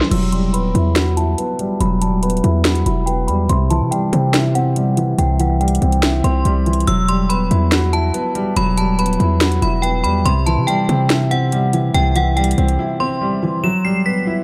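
Menacing and dark, this half-time trap excerpt at 142 BPM in E minor moves between Emadd9 and C, with an intimate concert grand piano up front, its action noise audible, and an inharmonic FM bell ringing high above through chorus, delay and a low-pass filter. A punchy 808 bass with a noise layer hits hard beneath an electronic kit of sharp snare, metallic hats and crash. A filter sweep runs to 6.9 seconds, and drums and bass drop out at 12.8 seconds for a break, while a barely audible granular pad adds a blurred, cloudy haze only at the very start and end.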